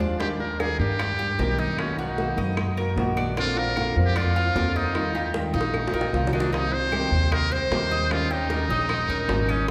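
A relaxed, danceable Cuban son groove in a straight four sets up under the up-front pizzicato upright bass, thumpy and dark with gut strings, while tight, high-tuned vintage bongos sit in the background, very quiet woody claves tick in at 0.6 seconds, and a drum fill arrives at 5.3 seconds. A thumb-plucked flamenco guitar plays warm accompaniment beneath the picked, metallic double-string arpeggios of the Cuban tres, and from 0.2 seconds a muted trumpet takes the jazz-style solo melody, buzzy, thin and breathy, with light vibrato and scooped notes over lush seventh and add9 chords. A wet church reverb with a long tail surrounds this excerpt, cut from a longer piece.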